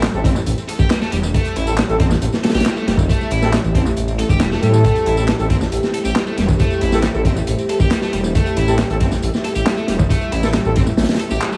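Energetic and swaggering, this 137 BPM breakbeat excerpt in A minor rides on a gritty, saturated acoustic break kit with a tight kick and snare, layered with a quieter electronic garage kit of handclaps, ride and tambourine, while a menacing, detuned saw bass sits up front beneath a double-tracked, fuzz-drenched electric guitar riff through tube saturation and analog delay, classical-style brass stabs, and a moody, warbling pad with chorus and sidechain pumping, all set in an echo-heavy small room with vinyl crackle, before the kick drops out at 11.0 seconds and the band hits an accent at 11.4 seconds.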